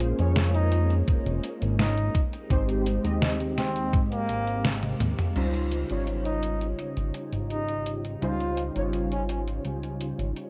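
Dreamy and woozy, this short vaporwave cut moves at an easy straight pace, with warbly lo-fi synth keys, a silky string machine in the background and a dark, nasal chorused synth bass sitting beneath a distant, mellow flugelhorn melody with light vibrato and tape echo that enters at 0.6 seconds. A detuned 8-bit drum machine with a tape-warm, medium-tuned snare, hi-hat, tambourine, toms and crash runs throughout, joined by a thumpy electronic kick from 1.1 to 4.1 seconds. A band accent and drum fill near 5 seconds lead into a Dbmaj9#11 passage, all heard through a worn cassette haze of pitch drift and light reverb.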